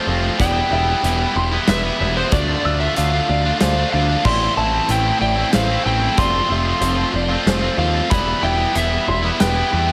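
Post-rock with a cinematic, brooding mood, this short passage from a longer piece moves in a steady triple metre over a progression of Em, Dmadd9, Am and F before returning to Em. A soft, felt-muted upright piano sits in the background, playing intimate, mellow arpeggios touched by analog delay. Two bright, overdriven electric guitars play a picked riff together from the opening moment, and a growling picked electric bass, direct and amped, joins a split second later and sits up front with its own overdrive. At 0.4 seconds a dark slide guitar enters with the melody, its fingered, gritty tone trailed by analog delay, and a big rock drum kit comes in at the same moment. The kit sounds acoustic and smooth in a big room, with a punchy kick, a medium-tuned snare, hi-hat and crash cymbal, and it stops at 9.5 seconds, just before the other parts. Light reverb and a small room ambience give the whole a close, heavy feel.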